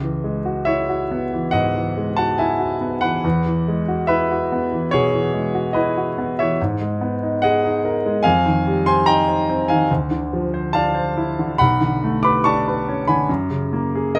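Mysterious and wistful, this excerpt of impressionist solo piano in C# minor drifts at 71 BPM in 4/4 with a rubato feel, tuned to A4 = 442 Hz. A clear, natural grand piano sits up front, spanning B1 to D6 and moving through rich extended harmonies from C#m11 through Eadd9, G#m9, Fm9, Dm9 and Bm9 before reaching Gbadd9 at 13.3 seconds. Close, detailed microphones and light reverb give the playing an intimate, finely etched presence across its 14.2 seconds.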